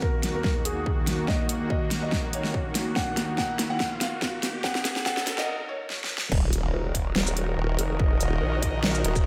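A dreamy, reverb-soaked mix with a high-passed, digital ambience frames this aggressive, chaotic slice of heavy wobble dubstep, cut from a longer piece and moving with a half-time feel. It opens on a build-up where a soft, felt-muted upright piano carries the melody with audible action noise and analog delay, over a lush, airy supersaw pad pumping against the sidechain and a very quiet, cloudy granular pad that drifts and blurs. A distorted, tape-tinged electronic kick and an overdriven dubstep kit, with its huge snare, hi-hat, shaker and crash sitting up front, push through drum fills and a filter sweep, while a riser and impact hover in the background. After a short break at 5.5 seconds, the drop hits at 6.3 seconds as a saturated, sawtooth-edged formant-sweep wobble bass surges in, soon joined by a nasal, resonant vowel-sweep wobble bass, both thickened with chorus and overdrive. From 7.7 seconds a clear brass ensemble adds light-vibrato classical stabs with analog delay over the churning low end.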